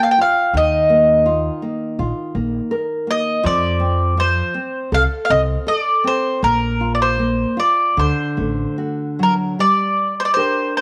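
A round, up-front mandolin carries the melody in this mournful, longing fado-style ballad, its picked double strings ringing high over a loose rubato feel. Beneath it, a nylon-string guitar is fingerpicked with a deep classical tone and audible finger squeak, while a woody, dark upright bass on gut strings plays thumpy pizzicato from 0.5 to 8.6 seconds. Light small-room reverb frames this short fragment of a longer piece, which turns toward a new section at 9.6 seconds.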